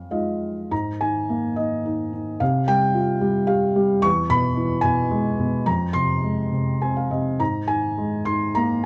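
Classical solo piano in Ab major, brooding and cool, with a felt-muted upright piano playing alone up front from 0.0 to 8.9 seconds in a rubato 3/4 at 95-115 BPM, its soft, mellow, intimate tone spanning E2 to Db6 in a dark production with light reverb, short felt piano fills at 0.0 and 6.5 seconds, and chords moving from Fm7 through Absus2, Csus4, E and Fm back to Absus2 in this brief cut from a longer piece.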